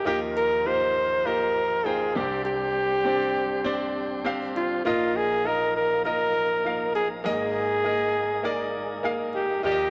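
With light reverb and a touch of studio ambience, this uplifting pop excerpt at 100 BPM puts a punchy, close-miked flugelhorn melody with vibrato up front over a polished, short-sustained baby grand piano, while a full, lightly overdriven tonewheel organ with key click and subtle chorus holds sustained chords in the background through Ebadd9, Csus2, Bbsus4 and Absus2.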